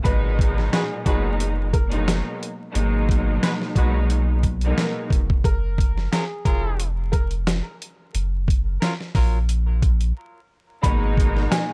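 This excerpt of boom-bap hip-hop opens on a clear, woody upright piano melody over a lush, bowed string section and a dusty, sampler-style drum kit, settling into a warm, nostalgic groove at 89 BPM in 4/4 with a light 16th-note swing. The compressed kit sits up front with a thumpy kick, fat snare and hi-hat, while a deep, round sub bass with a soft triangle and square-wave tone holds the low end beside it. The boxy piano and the trumpet section, which plays smooth, jazz-style stabs with light vibrato from 0.7 s, both carry filtering and analog delay. The distant strings have a cassette-tape character and drop out at 5.1 s, returning at 10.8 s after a short break as the harmony moves from G#m7 to F#maj7 and back. Tuned slightly flat to A4 = 435 Hz, the mix is a dry, gritty hardware recording with vinyl crackle and little reverb.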